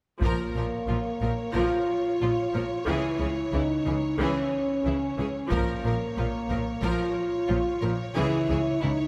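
Opening at 0.2 s with the full orchestra at once, this relentless, dramatic excerpt of an epic cinematic film score in Bb minor at 91 BPM sets up-front French horns holding sustained chords over bright, focused violins carrying the melody, a second violin line, intense viola accompaniment, and rich, smooth cello and distant double bass sections anchoring the bass, while a background taiko ensemble struck with hard sticks bursts in at 0.2 s and again at 5.5 s as chords shift between Bbm and Dbm in a moderate concert hall reverb.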